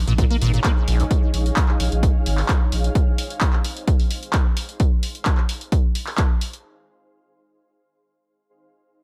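Cut from a longer piece, this hypnotic, trippy acid house fragment at 130 BPM in Bb minor pairs an overdriven, punchy electronic kick placed up front with a tape-warm analog drum machine of handclaps and hi-hat. A deep, thick sine sub bass pumps under sidechain, and a squelchy, hollow square-wave acid riff with resonant filter plucks, tube saturation, chorus and delay flickers only from 0.1 to 1.0 seconds. Above them, a cloudy, detuned granular pad drifts in its own reverb until it fades out by 4.8 seconds.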